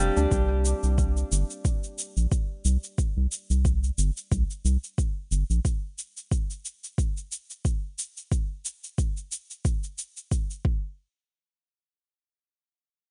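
Organic downtempo at 90 BPM with a light swing on the sixteenths, this mystical, earthy excerpt opens with a silvery, ringing steel-string zither playing fingerpicked arpeggios through a low-pass filter and digital delay until 3.0 seconds, over a round, dark analog bass that sits up front until 5.6 seconds, while a deep, tape-warm electronic kick and a produced cabasa carry the groove to about 10.8 seconds in a dry mix.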